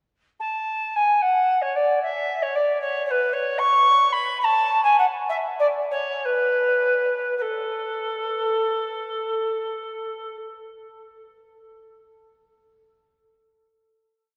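Flowing and dance-like, this short baroque-style classical fantasia for unaccompanied alto recorder moves in a rubato 6/8 in A major, its dotted-quarter pulse sitting between 50 and 77 BPM and slowing from 2.8 to 7.4 seconds. The airy, woody recorder carries the melody between A4 and C#6 with vibrato, tongued notes and chiff, sounding distant yet up front. A wet cathedral reverb heard from further back in the room lets the final note, reached at 7.4 seconds, ring on until about 11.9 seconds.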